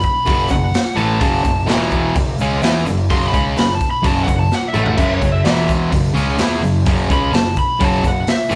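Menacing and raw, this garage rock excerpt has an overdriven slide guitar soloing over a double-tracked fuzz guitar riff that enters at 0.3 seconds, a growly picked bass in the background, a boomy, gritty drum kit up front with dark cymbals and a fill at 4.5 seconds, and a distant, grainy egg shaker, all captured live in one room with moderate large studio reverb.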